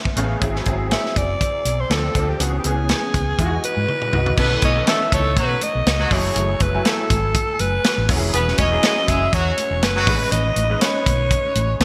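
A bright baby grand piano with an ensemble chorus opens this slick, urban slice of polished 1980s jazz-funk pop at 121 BPM, joined at once by a tight funk drum kit with gated reverb and a round, dark hollow-body fingered bass, before a breathy, raspy alto saxophone takes the lead up front. After a drum fill, a distant horn section with delay and light vibrato adds a second line from 4.4 to 10.2 seconds while very quiet, high-tuned congas ring underneath, as jazzy chords like Emaj9, B9sus4 and Amaj9#11 pass by. The bright digital production sits in a lush hall reverb, with a gentle 16th-note swing.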